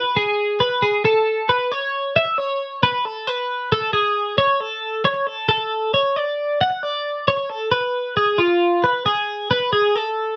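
Intricate and wistful, this short rock excerpt is cut from a longer piece and moves at 135 BPM in an unusual 5/4 metre with a straight feel. A single twelve-string electric guitar carries it alone from start to finish, playing a solo line that sits between F4 and F#5. Its tone is clean and picked, with a compressed, up-front presence that keeps every note close to the listener. A lush chorus gives the strings a shimmering thickness, while a slapback echo adds a quick repeat behind each phrase. The whole thing sits in a moderate studio reverb that lends a touch of space around the glowing guitar over its 10.4 seconds.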